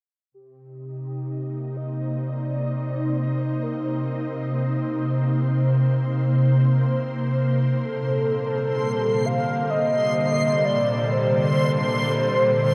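Spacious and reflective, this free-time ambient excerpt in C dorian opens with a velvety, wave-folded synth lead fading in at 0.3 s over an ethereal pad of detuned, chorused sustained chords held up front, moving from Cm7 to Bbmaj9, before a nasal, string-like drone with vibrato enters quietly in the background at 8.7 s and a reversed, bright, swelling granular texture joins at 8.8 s, all wrapped in a huge reverb with a cassette-tape character.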